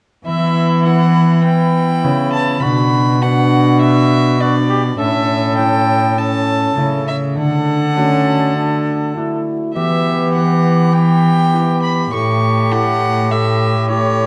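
A reedy, gut-string cello sits up front on the bass beneath a rich, bowed period-style violin melody in this courtly, rustic renaissance-style consort dance in E dorian at 101 BPM, cut from a longer piece, where a mellow cor anglais with vibrato carries a second line, a close-miked trombone with light vibrato and a very quiet, ringing fingerpicked concert harp fill in the accompaniment, and a stone room's moderate reverb and vinyl crackle frame it all from the trombone's entry at 0.2 seconds to 14.3 seconds.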